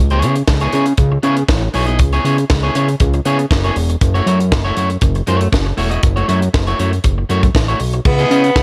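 Sultry and glamorous, this short disco cut moves at a steady, straight pulse over a dry, close sound with little reverb. A fat analog bass opens the piece at 0.0 seconds, thick and nasal with a saturated sawtooth edge and fast attack, sitting up front. A tight funk drum kit joins with a high-tuned snare, tight kick, hi-hat and crash cymbal in a small, mid-forward room, while an electric guitar at the edge of break-up adds picked accompaniment with a slightly broken-up tone. The harmony moves from C#m7 to F#m7 and lands on C#m9 at 8.0 seconds. Just as the passage closes, a raspy tenor saxophone enters at 8.1 seconds with a gritty, vintage pop solo voice, touched by slapback echo, before the fragment cuts off.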